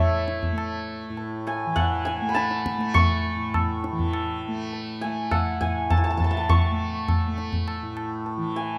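In a straight 3/4 at 102 BPM, this brief, meditative and serene Hindustani classical passage in A raga bilaval sets a hammered, ringing santur melody up front over a softly plucked, buzzing tanpura drone, with low-tuned tabla entering close and dry at 0.3 seconds and stopping at 8.5 seconds, all in a moderate stage reverb.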